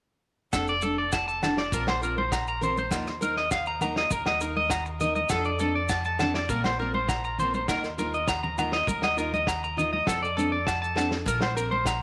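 A twangy, slightly broken-up electric guitar sits up front, picking high arpeggios through a tape echo in this sunny, danceable highlife guitar band groove at 101 BPM in straight 4/4. Beneath it, a picked steel-string acoustic guitar with old strings adds woody accompaniment, while a growly, thumpy pizzicato upright bass anchors the low end in F mixolydian. A soul drum kit with a tight kick and medium-tuned snare sounds dry and mid-forward with a rolled-off top. It is joined by ringing agogo bells, grainy maracas and bright, damped congas, with the bells and congas set in the background. The harmony cycles through F6, Bbsus2 and Ebsus2, and the band enters at 0.5 seconds with the congas arriving at 0.8 seconds. Moderate spring reverb wraps the passage, which carries lossy compression artefacts and is cut from a longer piece.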